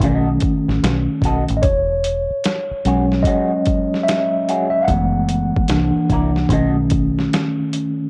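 Cassette-recorded home sound with light digital reverb frames this soulful, sultry neo-soul R&B clip, where a mellow, clean tine electric piano solos up front over swung, gritty, pitched-down boom bap sampler drums with a thumpy kick, a round, foam-muted dub bass, and a slightly broken-up electric guitar through a small old amp, colored by wah and phaser, that stops at 6.8 seconds.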